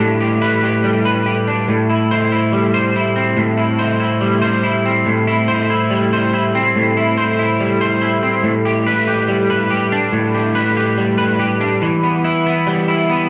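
A hall-like reverb with a 1.3-second tail surrounds a single electric guitar, placed up front in this short cut from a longer piece. It's dream pop at a slow 71 BPM in 4/4 with a straight feel, set in A minor, and the mood is hazy and melancholic. The guitar plays alone for the full 13.3 seconds, picked with a twangy tone that sits at the edge of break-up, slightly gritty. Analog chorus and tape echo on the guitar add a shimmering, smeared quality to its notes, which range from A2 to C5. The harmony moves from G over A into Am7 at 1.7 seconds, returns to G over A at 8.5 seconds, and settles on Em at 11.8 seconds.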